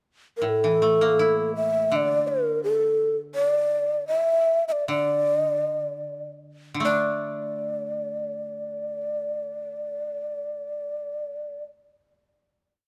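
A breathy, hollow shakuhachi carries a modal melody with ornaments and vibrato, its crisp, chiffy attack captured up front by close, detailed microphones. Beneath it, a woody, dry-toned koto played with fingerpicks supplies a low-string accompaniment at a lower level. This short, complete piece of Japanese chamber music moves in a rubato 2/4 at roughly 50-85 BPM, with an austere, still mood, all lightly touched by reverb. After a brief pickup, the main section begins at 0.4 seconds, and the pace slows between 3.4 and 6.9 seconds. At 6.9 seconds the two instruments settle onto a final chord.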